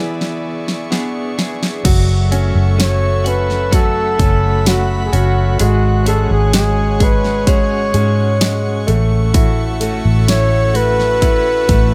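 A digital ambience surrounds this slow, longing pop ballad in F# minor, moving at 64 BPM in a straight 4/4. A mellow flugelhorn carries the melody up front, playing solo in a jazz style with scooped notes, while a clear baby grand piano with long sustain sets the accompaniment beneath it. An airy, breathy pad holds soft sustained chords with a slow attack and chorus, and a bright, clean electric guitar, recorded direct and compressed, picks tremolo-tinged arpeggios in the background. The opening break is a drum fill from the electronic, layered pop kit, which enters at 0.2 seconds with a punchy kick, fat snare, hi-hat and crash. A dark, round, foam-muted fingered bass joins at 1.9 seconds as the melancholic section begins on F#m7, moving through C#sus4/G# and F#m7/A.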